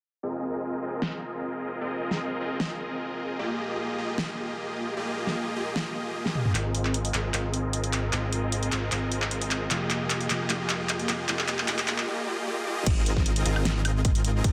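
A half-time 4/4 groove at 152 BPM drives this playful, bright future bass excerpt in Ab major, where huge, lush, detuned supersaw chords with a sub octave pump against the sidechain through a low-pass filter sweep and dub echo, moving between Ab69 and Fm11. An up-front big-room dance drum kit of crash, handclaps, hi-hat, a towering snare, toms and woodblock plays fills through the build-up, joined at 6.5 seconds by a fat, wave-folded analog bass that also pumps with the sidechain. At 12.9 seconds the drop lands with a punchy, tape-warm electronic kick, the mix sitting in light reverb and digital ambience under a dense, heavily limited modern master.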